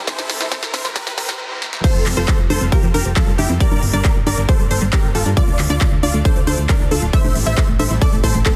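A punchy, up-front electronic kick drives this euphoric, soaring uplifting trance excerpt in F major at 136 BPM, with a crisp-hatted big-room kit of snare, handclaps, congas and crash cymbal pumping alongside it, as a background riser and drum fill build for the first 1.8 seconds before the drop brings in a round, dark FM bass with tube saturation and a chorused analog pluck second line, all beneath a huge, bright supersaw lead with phaser, digital delay and sidechain pumping, while a very quiet detuned unison pluck spins arpeggios and an airy supersaw pad with 12-bit sampler grit holds sustained chords from C through Fadd9, Gm and Dm to Am7 in a dry, dense, heavily limited mix.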